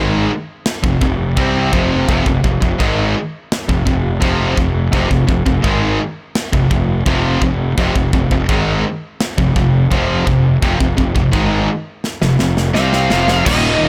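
Heavy metal with an aggressive, epic mood, built on picked riffs from an overdriven electric guitar and a bright high-gain rhythm guitar in the background over a growly, fuzz-laden fingered bass up front, while a polished, airy studio drum kit with tight kick, snare, crash and china cymbal enters at 0.7 seconds and plays a fill from 12.0 seconds, during which a warm high-gain lead guitar arrives at 12.7 seconds, and a double-tracked riff guitar joins at 13.5 seconds in a small room.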